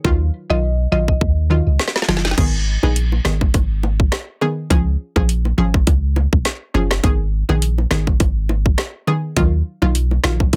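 A dry, dense and heavily limited mix carries this hypnotic, sultry dancehall excerpt at 103 BPM in G# dorian, with a lightly swung 16th feel. An up-front electronic drum kit with a tight kick, woody snare, metallic hats and overdrive sits beside a deep, punchy sine sub bass with a pitch-drop attack, while a detuned sawtooth analog pluck with chorus and a noise layer carries the chords, moving from D#madd9 through G#m and C#. A brief percussive FM mallet-like pluck with chorus and digital delay sounds at 0.5 seconds, and after a drum fill, round, low-tuned bongos played with hard hands enter in the background at 2.4 seconds.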